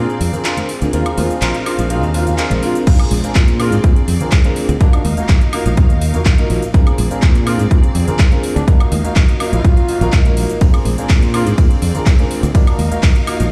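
A straight house groove drives this joyful, funky slice of filtered disco house, cut from a longer piece, with every part except the kick pumping against it from the start. An overdriven, punchy electronic kick lands up front at 2.9 seconds, turning a short build-up into the drop, while a layered house kit with metallic hats, handclaps, shaker, woodblock, crash and ride cymbals sits in a small room ambience, backed by tambourine and congas struck with hard hands in the background. A bright, direct fingered electric bass carries the low end, and a natural-toned grand piano, treated with a phaser, supplies the accompaniment. Lush, bowed studio strings with vibrato hold sustained chords in the background as the harmony alternates between Bb9 and Ebmadd9. A tight, smooth-topped pop horn section states the melody through a digital delay, and the whole mix rings as if played on a big sound system in a bare, stone-walled room.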